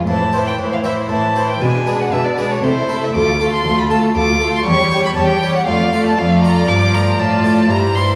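Baroque-style concerto movement in A minor, driving and stormy at 118 BPM in 3/4, heard in a short cut from a longer piece. An expressive solo violin sits up front with soft-attack portamento and vibrato, riding high over a smooth chamber violin second line, a distant background viola section, and a rich, even cello bass, while a round Flemish-style harpsichord and a close, warm background violin section with its own portamento share the texture. The chords move from Am through G#dim/B to Dm and Dm/F, and the whole ensemble sounds from further back in a wet recital hall with a 1.8-second reverb tail.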